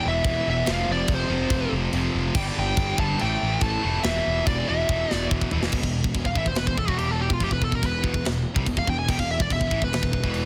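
Heavy metal in E phrygian at 143 BPM, this heavy, epic excerpt opens in half time, with a distorted, high-gain lead guitar up front carrying the melody from F4 to A5 through tape echo. Beneath it, two high-gain distorted guitars and a double-tracked, compressed fuzz guitar play low riffs between E2 and A3, the rhythm guitars sitting in the background and the fuzz guitar very quiet, while one of the distorted guitars drops out at 5.7 s. A growly, punchy fuzz bass with overdrive anchors the bottom from E1 to C2. The tight acoustic drum kit sits up front with a big-room sound, bright china and crash cymbals, a medium-tuned snare, a tight kick and toms, and a drum fill from 4.9 s leads into a lead guitar solo that runs from 5.7 s to the end. Power chords move from E5 through F5, G5 and A5 before returning to E5, and the mix is dry, dense and heavily limited in a modern style.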